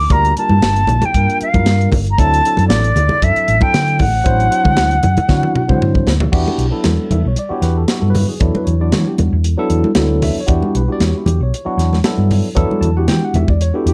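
A dark, lightly reverberant production frames this funky, intense stretch of electric jazz fusion with a sixteenth-note swing, shifting from Gm9 and D9 to Em9 at 6.3 s. An airy, tongued concert flute with vibrato carries the melody up front until 5.8 s. Beneath it sit a bright, clean tine electric piano colored by phaser, a round, amped hollow-body fingered bass, a tight, polished funk kit whose fill at 5.3 s leads into the new section, and ringing, dry congas in the background.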